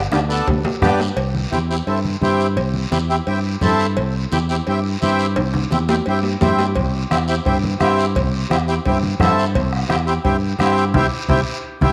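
A reedy, close-miked accordion sits up front in this joyful, danceable cumbia excerpt at 172 BPM in C major, joined by a round, fingered electric bass that holds a low register. Behind them, low-tuned congas with a thick-skinned tone stay in the background, ringing timbales and cowbell sound close and dry, and a raspy, distant guiro adds texture. A soft-beatered bombo sounds in a large room, dropping out after 1.0 seconds and returning at 6.8 seconds, while drum fills open the piece and recur, and a band accent arrives at 10.9 seconds, all bathed in a wet spring reverb.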